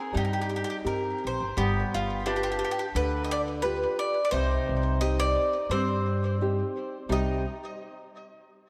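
Passionate and wistful, this short cut from a longer Italian folk serenade moves at 87 BPM in C minor with a gentle swing, its harmony shifting from Cm to G7 at 1.6 seconds and back to Cm at 4.3 seconds. A bright, picked bowl-back mandolin carries the melody up front with a touch of delay, while a round second mandolin sits in the background, a classical nylon-string guitar fingerpicks the accompaniment with audible finger squeak, and a woody, dark pizzicato upright bass anchors the low end. A lush hall reverb soaks the whole mix, lending it a dreamy glow.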